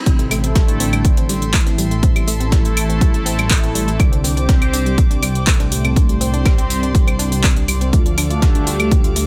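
Melodic techno at 122 BPM in A minor, hypnotic and dramatic, this excerpt drops straight into a punchy, up-front electronic kick and a smooth-hatted deep house kit with claves and handclaps, a very quiet gritty breakbeat kit with a high-tuned snare, a deep, rumbling detuned saw bass with tube saturation, a woody wave-folded pluck playing arpeggios through dub echo, a round, mellow synth brass melody with tape echo, bold warbling analog pad stabs, and earthy bowed chamber strings holding chords with vintage 12-bit sampler grit, the pitched parts pumping to the sidechain over Am7, Csus2 and Dm in a dry mix.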